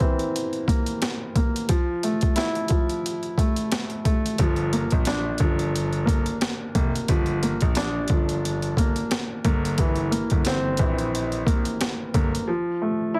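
Swung sixteenths in a steady four drive this boom-bap hip-hop fragment, cut from a longer piece, with a reflective yet tough mood. A sampler-style drum kit sits up front, its thumpy kick, high-tuned snare and hi-hat pitched down, compressed and overdriven into a gritty sound that carries the air of a large room. A dark upright piano plays the accompaniment throughout, mellow and woody with a short sustain, filtered and softened by a cassette-tape haze. At 4.4 seconds a clear concert grand piano enters as the bass, its deep, worn low notes present and clipped short, moving under a harmony that shifts from C7 and Fmaj7 through Gm7 and C7/G before settling on F. The whole mix is dry, with a heavily compressed, radio-like character.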